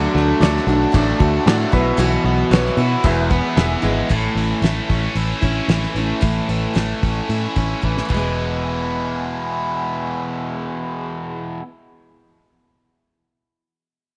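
Hopeful and nostalgic, this folk rock and heartland rock excerpt in a straight 4/4 sets an up-front, double-tracked overdriven electric guitar riff colored by phaser against a picked steel-string acoustic guitar with an auditorium-like body and a punchy, foam-muted fingered electric bass. A brilliant grand piano with audible action noise sits in the background only through the opening 4.0 seconds, while a dry 70s drum kit with a fat snare, tight kick and dark cymbals drives the groove until a fill at 7.8 seconds and then stops at 8.2 seconds. The chords move from D through Bsus4 to E and on to A, wrapped in a light studio reverb.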